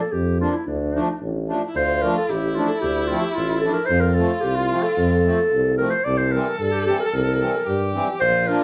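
In a straight 2/4 at 111 BPM, this soulful, festive klezmer excerpt in D minor sets a warm, classical-style clarinet melody up front over a clear tuba bass with light vibrato and a reedy, airy accordion accompaniment, while a dark, nasal violin with vibrato and portamento joins at 1.7 seconds as an expressive second line, the ensemble heard from further back in a wet studio reverb.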